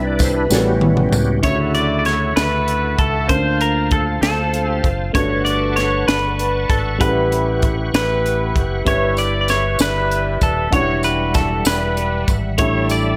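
A slow, straight 6/8 at 65 BPM carries this reverent, soulful gospel passage in D major, cut from a longer piece, built on a crisp fusion kit with punchy kick, high-tuned snare, hi-hat and toms in a small, pumping room, a direct fingered electric bass and a dark, mellow baby grand piano. A reedy, bright tonewheel organ with key click, chorus vibrato and fast rotary speaker holds sustained chords and takes a short solo at the start, while a drum fill and a jingly, close tambourine lead into a tight, vintage jazz-style horn section with vibrato and a clean, picked, compressed semi-hollow guitar sharing the melody from 1.4 s. Chords such as Dmaj9, Gmaj9#11 and Em9 move under light studio reverb, and the tambourine returns at 9.2 s.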